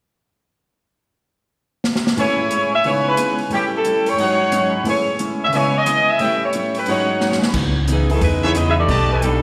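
An up-front saxophone section carries the melody with a smooth top and light vibrato in this dramatic, swinging big-band excerpt in C# minor at 179 BPM, cut from a longer piece. After a drum fill at 1.8 seconds, the saxes, clear piano, clean hollow-body jazz guitar and brilliant trumpet stabs enter at 2.2 seconds with slapback echo over airy, polished drums with a punchy kick. A woody pizzicato upright bass joins at 7.5 seconds as the harmony moves from Amaj7 and G#7sus4 toward C#m9 and B7alt, all heard like a live gig through the venue's PA in recital-hall reverb.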